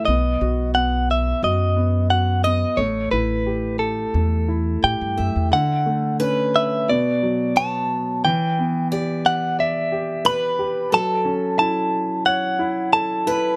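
Closely miked and nearly dry, this intimate excerpt of an acoustic folk-pop ballad has a reflective, straight 4/4 feel. A bright, compressed clean electric guitar, recorded direct and picked, with a tremolo effect, carries the melody up front over a smooth, vintage concert grand piano with deep bass and audible action noise, while a woody, thumpy pizzicato upright bass on gut strings plays until 5.5 s. From 2.4 s an old ladder-braced acoustic guitar with a boxy tone and aged strings adds picked arpeggios further back, as the harmony moves through Dmaj7, Bm, Em7 and F#m7.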